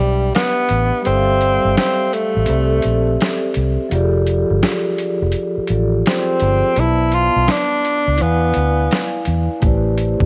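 A breathy tenor saxophone leads this dreamy, nostalgic lo-fi hip hop excerpt, played close-miked and up front in a jazz-style solo with subtone and vibrato, before falling silent at 9.3 seconds. Beneath it, a vibraphone struck with soft mallets rings out mellow, metallic chords with a slow motor vibrato and a cassette-tape tint. A dark, round, foam-muted electric bass sits up front, and a gritty, compressed, pitched-down boom bap drum kit joins at 0.3 seconds with a thumpy kick, medium-tuned snare and hi-hat. The groove moves at 84 BPM in 4/4 with a swung sixteenth-note feel, and the C major harmony drifts through rich extended chords from a rootless Cmaj9 toward Bm7b5, E7b9 and a closing Am11. Light reverb, small room ambience and vinyl crackle give the whole piece a hazy, well-worn atmosphere.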